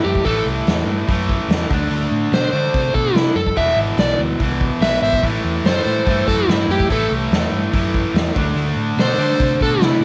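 A gritty, smoky mix under light reverb opens this short cut from a longer blues rock and southern rock power-trio piece, moving at 144 BPM in a straight 4/4 in A dorian. Up front, an overdriven slide guitar carries the melody with a dark, fingered tone, while a cranked stack guitar, bright and double-tracked, drives the riff beneath it. A vintage muted picked electric bass sits round and foam-muted in the low end, and a raw garage drum kit with a punchy kick and medium-tuned snare sounds saturated in a bright stone room, its top rolled off. At 4.8 seconds a trumpet with a metal mute slips in behind the band as a second line, buzzy and thin with light vibrato and scooped notes in a forceful jazz style. The harmony moves from A5 through D5 and E to A minor before returning to D5.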